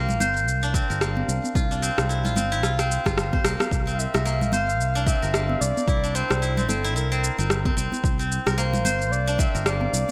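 Peaceful and earthy, this organic downtempo excerpt at 111 BPM in C mixolydian, with a lightly swung sixteenth feel, sets silvery fingerpicked steel-string zither arpeggios with delay against an up-front fretless electric bass carrying ensemble chorus and sidechain pumping, overdriven electronic shaker and rim click in gated reverb, hard-handed congas and bongos sitting in the background, a deep overdriven electronic kick, and a drum fill at 2.6 seconds before a breathy, flute-like synth lead enters at 3.9 seconds with chorus, tremolo, vibrato and delay, all within a lush hall and a bright 1980s-style digital production.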